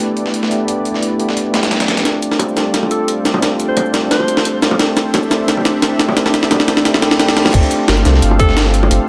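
Melancholic and dreamy, this liquid drum and bass excerpt opens with a clean tine electric piano and a smooth, detuned, warbling analog pad under filter sweeps, gritty overdriven soul-sampled hats and snare, and an up-front breakbeat kit with muffled cymbals and shaker; soft, low-tuned bongos then join as a bright alto saxophone with vibrato sings through tape echo, and after a build-up with a drum fill and a faint reverse cymbal, the drop at 7.5 s brings in a deep, round sine sub bass and a tight electronic kick, set in a lush hall reverb.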